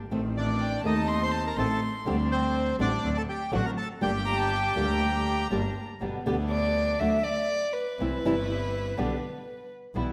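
Drenched in a wet scoring-stage reverb, this dramatic, tense tango fragment moves rubato at 122 BPM in G harmonic minor, with a biting, earthy bowed double bass, a fingerpicked flamenco guitar and a rich, distant chamber string section playing stabs beneath a reedy, bright bandoneon melody and an intimate sul tasto violin line that takes a solo once the music turns to G major at 6.0 s.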